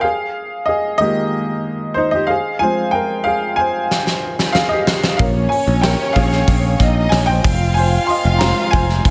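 An intimate, woody upright piano with audible action noise opens this earnest, bittersweet piano-driven pop passage in F minor at 93 BPM, joined at 3.9 seconds by a huge arena drum kit whose fill brings a fat snare and punchy kick, before a growly, bright picked electric bass and an expressive, vibrato-rich bowed violin section enter together at 5.2 seconds under light reverb and small room ambience.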